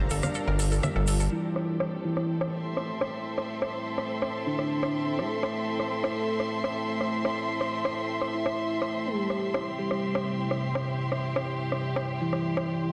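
A straight 4/4 house kit at 124 BPM drives this dark, dramatic melodic techno excerpt in A phrygian, its overdriven, filtered sound built from congas, metallic hats and rim clicks. A gritty, saturated synth bass, a round analog pluck arpeggio with chorus and dub echo, and a grainy tube shaker open the piece over a deep ambient pad with vintage 12-bit sampler grit and veiled, muted strings; those three parts stop at 1.3 seconds, when a soft octave-layered synth lead takes the melody with tape echo and a filter sweep. The chords move from Gm7 to Am and then C, and the whole sits in a lush hall reverb under a dense, heavily limited master.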